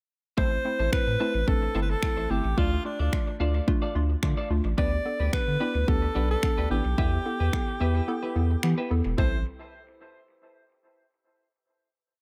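A punchy four-on-the-floor kick drives this short, energetic dance-pop piece in A minor at 109 BPM, with finger snaps and toms layered over a thick, saturated sub bass that pumps against the kick in a syncopated line full of muted ghost notes. A hollow square-wave pluck bounces through close-voiced eighth-note chords with chorus and a filter sweep, while a bright, twangy twelve-string electric guitar adds a choppy funk-style riff through subtle chorus and analog delay. Up top, an edgy, forceful alto saxophone repeats vibrato-laden hook phrases into an echo-heavy mix, and the kick drops out at 8.1 seconds before the group lands on a final A minor chord at 9.2 seconds.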